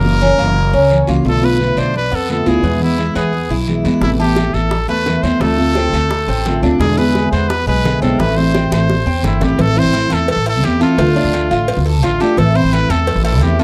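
A dry, close recording in a 1970s studio style carries this warm, danceable stretch of Cuban son and guajira, where a brilliant trumpet with light vibrato sings the pop-style solo melody over a dark, full-bodied picked steel-string acoustic guitar and the mellow, metallic arpeggios of a Cuban tres with doubled strings. Up front, a woody, thumpy pizzicato upright bass on gut strings anchors the groove, while a raspy guiro sits in the background from 0.2 s. Round, low-tuned bongos and cowbell join at 4.0 s, and a drum fill at 8.7 s leads into a new section.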